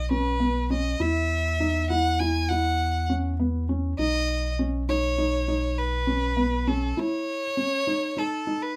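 A clear, close violin carries the melody in this short chamber piece cut from a longer work, its single bowed line smooth and even with a touch of vibrato. Written in an uneven 5/4 at 100 BPM with a straight feel, the music sits in B mixolydian, tuned slightly below standard pitch at A4 = 436 Hz, and has a shimmering, playful mood. Beneath the violin, a felt-muted upright piano enters at 0.1 seconds with mid-register arpeggios whose thick felt gives them a soft, dark, intimate tone and short sustain. A deep, round sub bass with a sine-like quality sits up front alongside the violin, holding sustained low notes until it stops at 6.9 seconds. The harmony moves from B to Esus2, back to B, and then to a rootless B9, all within a light reverb.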